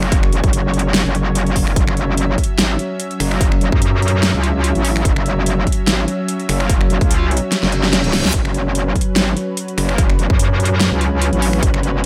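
A dry cut of menacing, heavy wobble dubstep with a swung half-time feel. A metallic, distorted FM wobble bass snarls up front beneath a lush, detuned unison pad with a slow attack, chorus and sidechain pumping, while a punchy electronic kick and a tape-warm dubstep kit of finger snaps, metallic hi-hats and a huge snare carry the groove. At 7.5 seconds the kick drops out for a drum fill, and a faint reverse cymbal sounds in the background from 7.7 to 8.3 seconds.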